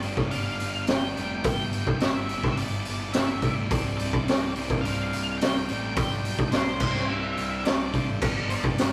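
Indie rock at 106 BPM in a straight 4/4, this short cut from a longer piece feels jangly and carefree, moving through G7, Em/G, Csus2 and G/B before settling on G. The raw garage drum kit sits up front with a boomy kick, a high-tuned snare, hi-hat and crash, its gritty, saturated sound rolled off at the top. Behind it, a crunchy overdriven guitar and a bright, scooped high-gain guitar both pick out riffs, joined by a growly fuzz bass that plays low and in the background. From 0.3 seconds a dark octave-fuzz lead guitar carries the melody high above, with distortion and digital delay. A very quiet, jingly tambourine appears only at 8.2 seconds, and the whole take has the rough tube-saturated character of a rehearsal room, with a moderate small-room reverb.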